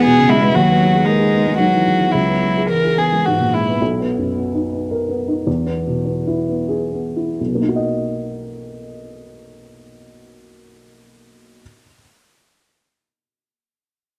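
A dark, woody solo violin carries the bowed melody with vibrato until about 3.8 seconds over a rich, smooth cello line that drops out at 3.5 seconds, after which the mellow, up-front upright piano with short sustain, present from the start, continues alone in this tender, intimate neoclassical excerpt in 3/4, played rubato and slowing from 3.0 to 7.4 seconds, bathed in moderate plate reverb.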